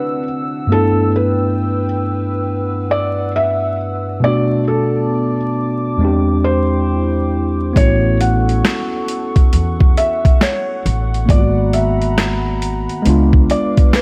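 Melancholic and reflective, this swung lo-fi hip hop excerpt opens with a soft, felt-muted upright piano melody with audible action noise over a worn, slightly out-of-tune tine electric piano and a deep, detuned analog pad with chorus, the three low-pass filtered, before a gritty, pitched-down boom bap drum kit with a thumpy kick and a woody pizzicato upright bass arrive up front at 7.8 seconds, the whole wrapped in light reverb and vinyl crackle.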